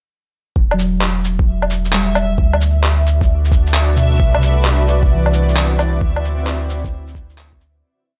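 Future garage with a nocturnal, melancholic mood, built on a swung groove where a muffled, overdriven two-step kick and a skittering shuffle of shaker, low woodblock and handclaps sit up front, re-recorded in a small room, alongside a round sine sub bass that pumps against the kick. Soft, muted felt-like synth keys scatter dark notes through chorus, sampler grit and tape echo under a continuous filter sweep, while a reversed, bright high note swells in at 1.5 seconds and a blurred granular pad arrives at 3.2 seconds to carry chords from Bm7/D to D13. The whole short piece has a dry, gritty hardware sound and fades out from 5.4 seconds.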